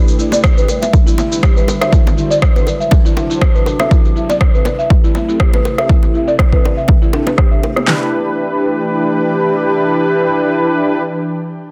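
A buzzing, woody marimba played with soft mallets opens this earthy, hypnotic afro house excerpt, its arpeggios passing through delay and a low-pass filter, while mellow, detuned synth brass stabs with chorus and vibrato. An ethereal pad holds sustained chords under phaser and ensemble chorus, and a punchy, overdriven deep house kit of kick, fat snare and handclaps sits up front. Tight, high-tuned bongos, a gritty shaker and rim click, and filter sweeps on the drums and pad fill the groove until the marimba stops at 8.1 seconds, leaving brass and pad pumping over Em7 to 11.0 seconds in a dense, heavily limited mix.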